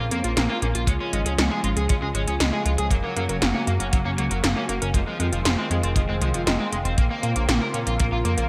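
Straight 4/4 at 118 BPM drives this moody, nocturnal synthwave excerpt in Bb minor, where gated electronic snare and metallic hats start at 0.1 s and a dry, tight acoustic kick joins at 0.9 s up front, a glossy pulse-width chorused synth bass anchors the low end, a lush, detuned unison pad with phaser and sidechain pumping holds sustained chords, a round analog pluck with ring modulation and a filter sweep spins tape-tinged arpeggios through digital delay, and a crunchy overdriven picked guitar riff sits beneath a low-pass filter, all bathed in plate reverb and bright 1980s-style digital sheen over chords moving from Bbmadd9 through Db, Gb and Fm7 back to Bbmadd9.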